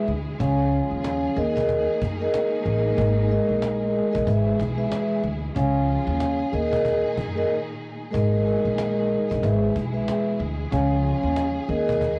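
A moody, tough boom-bap hip-hop excerpt opens with a mellow, ringing vibraphone played with soft mallets, its slow motor vibrato up front, over a lush bowed string section holding sustained chords underneath. Within the first instant an upright bass joins with a woody, growly pizzicato tone, thickened by tube saturation and sitting close in the mix. A snappy cajon with snares carries the swung groove, compressed and given a gritty cassette-tape character. The harmony cycles through C#, D#sus4, G#sus2 and E/G#, and a brief break between 7.5 and 8.1 seconds interrupts the loop before it resumes. Small room ambience and a home cassette recording lend the whole piece an intimate, lo-fi feel.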